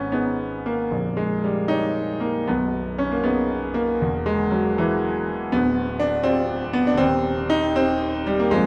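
A clear concert grand piano opens this stormy, brooding romantic character piece, played solo in 6/8 with free, rubato timing and a deep bass that reaches down to A#0. Its up-front, open sound sits in a wet concert hall with a 2.0 s reverb tail, and at 5.5 s the harmony turns darkly toward a new tonal centre through G7/D to Cm/Eb. The passage is cut from a longer piece and runs to 8.7 s.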